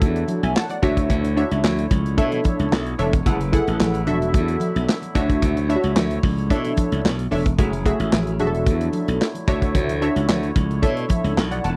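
Early-eighties boogie funk with a late-night, danceable mood, moving in a straight 4/4 groove through a cycle of lush extended chords such as E9sus4, Dmaj9, Bm11 and F#m9. A punchy, growly slap bass sits up front with a bright, direct tone, alongside a tight-kicked acoustic drum kit with handclaps, hi-hat and a medium-tuned snare, its top end rolled off for a mid-forward sound. A funky polysynth comp of detuned sawtooth and square waves adds filter-plucked, fast-attack chords, softened by chorus into a mellow sheen. Behind it, a distant woodwind section holds sustained chords in a classical style with light vibrato, while very quiet, band-limited congas with a thin, vintage skin add hard-handed accents. The whole 11.8-second cut has the dry, close feel of a 1970s-style studio in a small room.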